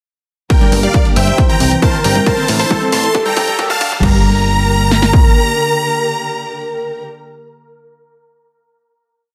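Uplifting trance at 136 BPM in G dorian, soaring and euphoric, where huge detuned supersaw chords carry a repeating riff in thirds and sixths over a velvety chorused synth lead, dark woody bowed strings, a round warbling analog pluck arpeggio, a punchy off-beat analog bass and an overdriven techno kit of four-on-the-floor kick, snare, congas, crash and hi-hats, building through a filter sweep, drum fill and very quiet riser over Gm, C, Am and Gm until 4.0 seconds, when a final chord rings out to the end.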